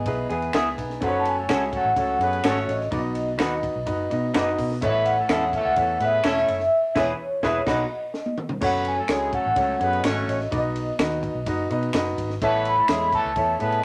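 A straight 4/4 groove at 126 BPM drives this short, danceable cut of uptempo 1960s-style soul, with a compact cocktail drum kit pairing a punchy kick and high-tuned snare with dark cymbals, while close finger snaps keep time from 0.5 to 13.0 seconds. A vibraphone played with soft mallets carries the melody throughout, its metallic, ringing tone mellow and warm with a medium motor vibrato, over a round, foam-muted electric bass. An intimate concert grand piano sits up front with deep bass and audible action noise, opening with a brief fill before settling into accompaniment. A vintage hollow-body jazz guitar plays a clean, dark riff only at the very start and again briefly near 7.0 seconds, while a slightly broken-up, lo-fi electric guitar adds compressed stabs until 7.8 seconds. A clear horn section with vibrato and octave doubling enters at 1.0 second as a second line, and the uplifting chord movement from E through F#m, B and A builds to a band accent and a drum fill before the phrase begins again, all set in a moderate studio reverb.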